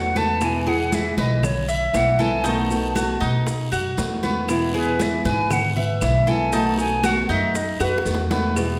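A hollow, airy concert flute with vibrato carries the melody over bright, metallic Cuban tres arpeggios, fingerpicked nylon-string guitar and thumpy pizzicato upright bass in this danceable Cuban son and guajira excerpt in E major at 118 BPM, with background congas, raspy guiro, grainy maracas, woody claves and very quiet bongos and cowbell entering by 0.4 seconds, a drum fill at 7.8 seconds, and the whole group set in a reverberant recital hall.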